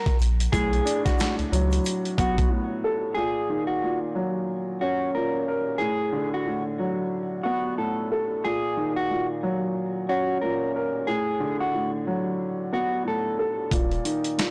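Boom-bap hip-hop at 91 BPM with a 16th-note swing, this tough, gritty excerpt sets a clean, chorus-and-delay-tinged electric guitar melody over a dark, woody upright piano playing Bm7 and Ebm7 chords, while pitched-down, compressed sampler drums with a thumpy kick, a round, deep sub bass and a very quiet, grainy shaker drop out at 2.5 seconds and the drums and bass return briefly at 13.7 seconds, all in a blown-out, overdriven recording with light reverb.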